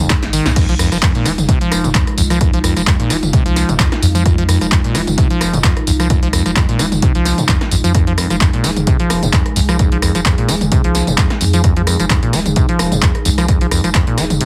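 A squelchy, resonant sawtooth acid bass sits up front, its bright riff running from F2 to F3 through tube saturation and delay with a restless filter sweep. This is a trippy, gritty acid house track at 130 BPM in 4/4, carrying a 55% swing on the 16ths in F minor pentatonic, tuned to A4 = 438 Hz, and cut from a longer piece. A punchy analog drum machine opens with a fill over the first 0.6 seconds. It then keeps crash cymbal, handclaps, hi-hat, rim click, snare, tambourine and toms close and tape-flavoured, with a short room on the snare, clap and hats. An electronic kick enters at 0.1 seconds and carries on to 14.0 seconds, while a round sine sub bass and a moody, detuned pad both pulse with sidechain pumping. The pad holds dark sustained chords beginning on Fm7, with a slow attack, chorus and phaser. Light reverb and a heavily compressed, radio-like sound colour the whole passage.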